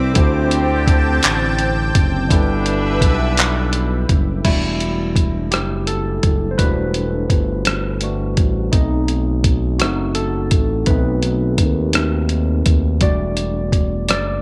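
A slow, tender six-eight R&B groove at 56 BPM opens with a barky, lightly overdriven tine electric piano, a lush detuned unison pad touched with chorus and phaser, and a smooth, mellow synth bass with vibrato. From 0.2 s a gritty, compressed soul drum kit with a thumpy kick, handclaps, hi-hat, rim click and crash sits up front, while a vintage jazz-style horn section adds tight stabs with slapback echo over the D7sus4 and G6 chords. At 4.4 s the pad and horns have dropped out and the electric piano takes a sensual solo over Em11 and B7b9 in light reverb, a passage cut from a longer piece.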